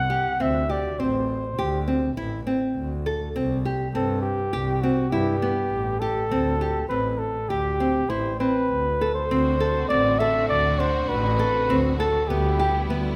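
In a straight, uneven 5/4 pulse, this playful, hopeful contemporary chamber excerpt sets a breathy, jazz-style flugelhorn solo with vibrato and scooped notes over fingerpicked nylon-string guitar arpeggios with audible finger squeak and a pure, bowed sul tasto double bass with a soft attack, before a lush symphonic string section adds smooth sustained chords at 9.3 seconds, all within a moderate scoring-stage reverb.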